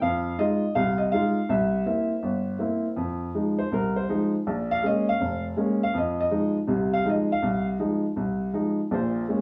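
A woody, open upright piano plays alone from the start of this moody, smoky solo jazz fragment in F minor, swinging in 4/4 at 162 BPM across a span from F1 to F5 with long sustain and an up-front presence, moving from Fm7 to C7 before a new section at 3.0 s carries it through Fm7, Bbm7 and back to Fm7, the piano sitting in a wet, small-room reverb and tuned to A4 = 437 Hz.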